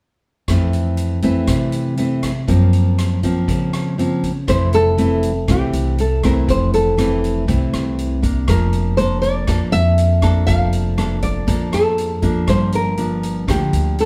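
Bossa nova in F major at 120 BPM, relaxed and sophisticated, this excerpt opens with a dark, woody, fingerpicked nylon-string guitar accompaniment and a swinging big-band drum kit of hi-hat, rim click and punchy kick. At 4.5 seconds a full-bodied nylon-string guitar melody with plate reverb enters up front alongside a growly pizzicato upright bass, the whole mix heard from further back in a moderately reverberant studio room.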